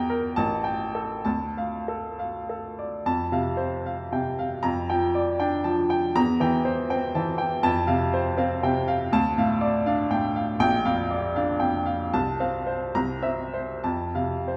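A brilliant, up-front baby grand piano carries this stormy, passionate romantic character piece alone, ranging from A1 to Bb5 in a rubato 6/8 that moves between 62 and 82 BPM in dotted quarters. It opens in D minor, then turns to F major at 3.1 s, passing through harmonies such as Gm7/F, C7/E and Gm7/Bb before settling on F at 13.8 s. A lush recital-hall reverb places the listener further back in the room, and the excerpt breaks off from a longer piece at 14.6 s.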